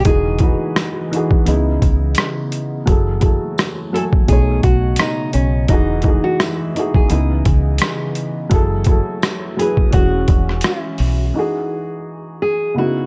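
A gritty, overdriven boom bap drum kit sits up front with a thumpy kick, hi-hat and rim click, anchoring this dreamy, cosy lo-fi hip hop excerpt, where a round, foam-muted dub bass and a woody, intimate upright piano support a bright, fingerpicked nylon-string guitar melody with tape echo, while a warbling, detuned pad and a jingly tambourine, which plays from about 0.8 to 10.8 seconds, stay in the background of a small room, until the drums, bass and pad stop at about 11.3 seconds, leaving the guitar and piano alone to 13.1 seconds.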